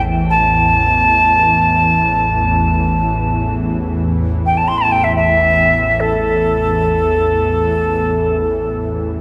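Steeped in a wet church reverb, this haunting, meditative world excerpt in free time, tuned to A4 = 438 Hz, opens on a mellow, ethereal pad drone, detuned, slow to bloom and thickened by ensemble chorus and its own reverb, before a silver concert flute enters at 0.3 s with a crisp, metallic, straight-toned melody that sounds both up front and distant through its tape echo.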